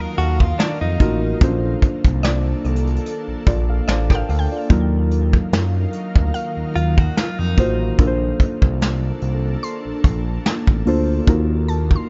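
A dry, echo-heavy mix with a muffled top end frames this tender, romantic contemporary R&B piece, whose lightly swung groove rests on an up-front brush kit with a tight kick and a smooth, mellow synth bass that glides with portamento and vibrato. Muted, felt-like synth keys with chorus and an ethereal, airy pad bathed in ensemble chorus and reverb carry the Ebmadd9 and Bbmaj9 harmony, while a clean, direct-recorded electric guitar plays brief arpeggios through analog delay at the opening and again from 6.8 seconds. From 2.2 seconds a woody, round, mallet-like synth pluck with chorus and delay adds a soft texture in the background.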